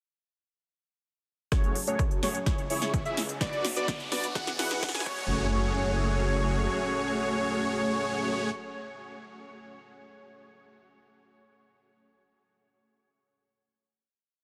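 Festival progressive house in F# minor at 127 BPM, anthemic and powerful, where a dense, compressed supersaw riff with 12-bit grit and dub echo leads a filter-swept build from 1.5 seconds over a detuned saw bass, a bold unison lead arpeggio, an airy background pad, a punchy four-on-the-floor electronic kick and an overdriven big-room kit with crisp hats, a drum fill and a faint riser, before the drums drop out at 5.2 seconds and the synths ring into a final hit through 8.5 seconds on a chord cycle of F#madd9, C#m, Bm and Eadd9.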